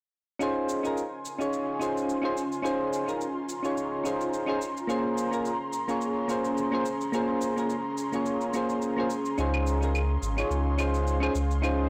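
A blown-out, overdriven recording with a moderate room reverb frames this sunny, warm sunset chillout fragment, which moves in a lightly swung 4/4 over Dbmaj7 and Bbm9 chords. Soft, round electric-piano-like synth keys with chorus and tape echo sit up front, while an ethereal, airy pad of detuned unison voices with ensemble chorus and vintage 12-bit sampler grit holds sustained chords from 1.0 seconds, over a tape-tinged electronic shaker and claves in a small room. A deep, round sub bass arrives at 9.4 seconds.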